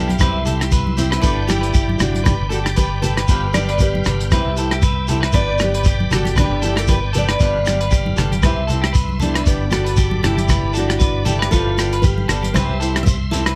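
Lightly reverberant and sunny, this danceable highlife guitar band excerpt in G major moves at 116 BPM with a swung sixteenth feel: a full-bodied fingerpicked steel-string acoustic guitar with slapback echo and finger squeak carries the melody over a dark, boxy swing-style acoustic guitar, twangy clean electric guitar arpeggios with their own slapback echo, a growly fingered electric bass, a muffled lo-fi soul drum kit of hi-hat, tight kick and rim click, soft-handed congas, a grainy shekere, and a shouting, lightly overdriven tonewheel organ holding sustained chords in the background through a slow rotary speaker and chorus vibrato as the harmony cycles through C, G and G7.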